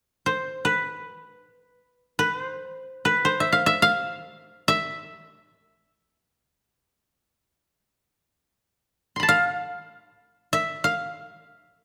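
A lone koto opens the recording, its woody, up-front tone plucked with fingerpicks, and it carries the whole passage from 0.0 to 11.8 seconds. This is Japanese traditional chamber music in free time, unfolding with an austere, still mood. The koto stays between B4 and C6, and its warm, dry sound keeps each note close. A moderate recital-hall reverb adds a gentle sense of space around the instrument. The clip is a short cut from a longer piece, offering a brief, still glimpse of solo koto playing.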